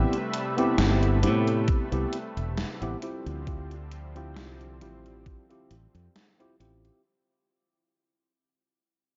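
A growly, up-front fingered electric bass anchors this nostalgic, dreamy vaporwave fragment, joined by a clean tine electric piano with subtle chorus and tape echo, a thick, warbling, detuned sawtooth pad with a slow attack, and an overdriven 80s drum machine whose hi-hat and snare carry gated reverb, while a thumpy electronic kick plays from 1.7 s to 5.5 s over a lightly swung groove that moves from Am9 to Dm11 in a dark production that fades out from the start.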